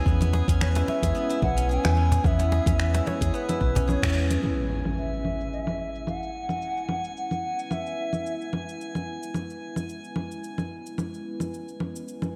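Organic downtempo at 110 BPM in C# minor pentatonic, meditative and swung, with a warbly, lo-fi tape-like pad and a drifting glassy harmonics texture sustaining throughout under a reverb-soaked hall while a silvery, fingerpicked steel-string zither rings out arpeggios until 7.0 seconds and a breathy, mellow bansuri carries the melody with vibrato and analog delay. An up-front, woody FM bass, a deep electronic kick and a close, dry cajon drive the opening with sidechain pumping on the bass, and an afro-pop kit of cabasa, congas, finger snaps and metallic hats keeps going to the end. A band accent at 4.0 seconds leads into an electronic impact at 4.4 seconds as the harmony moves from E6 to C#m7.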